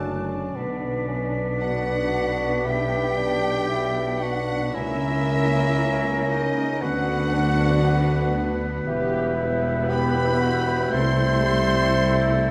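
Bathed in a wet recital-hall reverb, this lyrical, serene slow romantic orchestral passage, cut from a longer piece, moves with rubato at 58 BPM in 4/4 from a D/F# opening into Bm, as a lush bowed violin section carries the vibrato-laden melody with a soft attack and smooth top while a second, distant violin section, an airy hollow flute, a clarinet and a background oboe add second lines, and a bassoon, a viola section with portamento, a mellow background French horn section holding sustained chords, very quiet ringing thumb-plucked harp arpeggios, and a bass of roomy tuba, a smooth, close cello section and an expressive double bass section fill out the sound.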